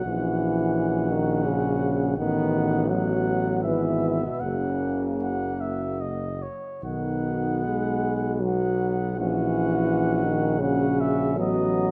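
Serene and lyrical, this hymn-like classical passage for brass band unfolds in a flexible, rubato 3/4 at around 70-87 BPM in B major, and is cut from a longer piece. A mellow cornet carries the melody with vibrato and a soft attack, while a dark, distant French horn section sings a very quiet second line beneath it. The up-front euphonium supplies accompaniment, warm with a smooth top and light vibrato. From 0.1 seconds, a clear, present trombone section joins in the background, and a roomy tuba anchors the bass. The harmony drifts from F#7/A# through E/G# and F# to a settled B chord before turning toward B7/A near 11.4 seconds, all wrapped in a moderate recital hall reverb of 1.7 seconds and a dusky production.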